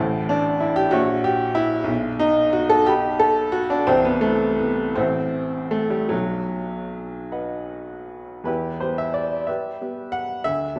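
Brooding and passionate, this brief cut from a longer romantic character piece for solo piano moves in a slow, rubato 6/8 at roughly 49-65 BPM in E minor, tuned to A4 = 435 Hz. A clear, woody upright piano with a vintage tone and long sustain sits up front, ranging from C1 to C#6 as diminished and half-diminished harmonies lean toward B before settling on E minor at 8.5 s for a new section. A wet recital-hall reverb, as in a church or concert hall, surrounds the instrument through to 10.8 s.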